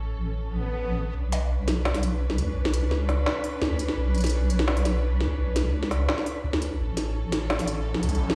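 Half-time drum and bass in B minor at 170 BPM, dark and cinematic, this excerpt opens with smooth, intimate bowed strings holding sustained chords over a deep, detuned wobble bass with chorus, an electronic swell at 0.6 s leading into a build-up on Bmadd9 where an overdriven electronic kit of woody snare and crisp hats enters up front at 1.3 s, before the harmony returns to A and a riser arrives at 7.8 s, all heard through the stone reverb of a bare room played on a big sound system.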